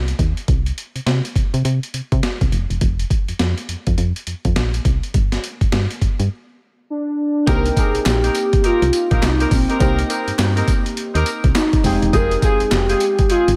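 New jack swing R&B with a confident, bouncy swung groove, built on a punchy, round FM bass and a gritty, compressed sampler-style drum kit with thumpy kick, high-tuned snare, hi-hat and tambourine, until, during a short break, a velvety, detuned synth lead with portamento enters at 6.9 seconds and a glassy, bell-like FM electric piano and mellow, vintage horn section stabs join at 7.5 seconds, with hollow, distant group handclaps in the background, slapback echo on the lead, piano, horns and claps, and light reverb.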